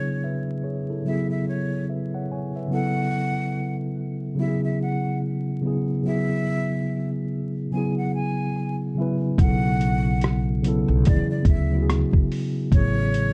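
A breathy jazz flute carries the reflective, nostalgic melody in this lo-fi hip hop fragment at 72 BPM, its straight tone and soft attack floating over a mellow, clean tine electric piano that sits up front with a cassette-tape tint. At 9.4 seconds, woody, growly pizzicato upright bass and a compressed, muffled sampler-style drum kit with a thumpy kick and vintage 12-bit grit join in, adding a swung 16th-note pulse. Light reverb and vinyl crackle give the whole a dark, warm finish.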